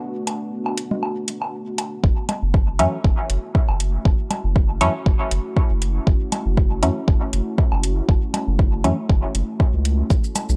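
Deep, meditative dub techno in F# minor at 119 BPM with a light 16th-note swing, opening on a dark, detuned sawtooth pad holding sustained Bm7 chords alongside overdriven metallic hi-hat, shaker, woodblock and congas with dub echo, before a round, soft sub bass and an up-front overdriven kick arrive at 2.0 seconds on F#m7, joined at 2.8 seconds by a muted, filtered sawtooth chord stab with chorus, phaser, tape grit and dub echo, all in a dry, gritty hardware recording with pumping sidechain on the pad, bass, stab and percussion.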